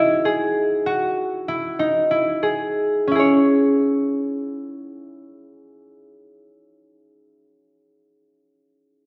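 A concert harp stands up front in this short contemporary instrumental excerpt, cut from a longer piece, playing fingerpicked arpeggios that sit between C#4 and C#5. The mood is urgent and restless, unfolding in free time in C# minor with the harp tuned to A4 = 442 Hz. Its tone is mellow and ringing, and the opening passage slows down over its first 3.1 seconds around a D#madd11 chord before settling onto C#m for the second passage. The harp sounds throughout the 7.9 seconds, carried by a wet recital hall reverb that lets each plucked note bloom into the space.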